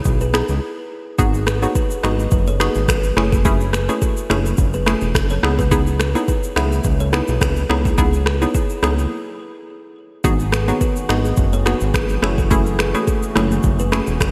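A fat, saturated analog bass sits up front in this mellow, smooth afrobeats excerpt at 106 BPM in F# dorian, alongside an overdriven electronic drum kit with deep kick, finger snaps, rim click, shaker and gated reverb, a hollow, bouncy square-wave pluck with chorus, a woody kalimba riff through digital delay, distant, ringing high-tuned congas entering at 1.2 s, and a soft, flute-like pad that arrives in the background at 10.2 s, all within bright 1980s-style digital production with light reverb.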